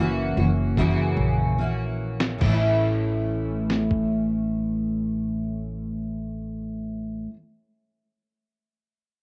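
A double-tracked, fingerpicked steel-string acoustic guitar, full-bodied and up front with a cassette-tape tint, opens this carefree, sunny acoustic pop excerpt at 70-77 BPM in 4/4, joined from the start by a woody pizzicato upright bass, while a gritty, compressed sampler-style drum kit with a thumpy kick and fat snare enters at 0.8 seconds, plays a fill as the tempo slows, and drops out at 4.1 seconds, all set in a small home room and moving from F#7 to A at 2.4 seconds.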